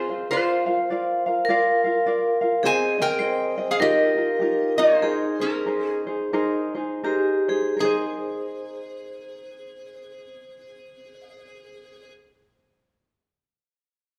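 A nasal, metallic lap resonator guitar carries the slide melody with fingerpicks up front, over the ringing fast-vibrato second line of a vibraphone struck with medium hard mallets (both touched with slapback echo) and a light, thumb-plucked tenor ukulele, in this languid, sunny Hawaiian excerpt in swung 4/4 and Ab major that slows from 2.6 to 7.8 seconds within a 78-104 BPM range, all bathed in a wet recital hall reverb.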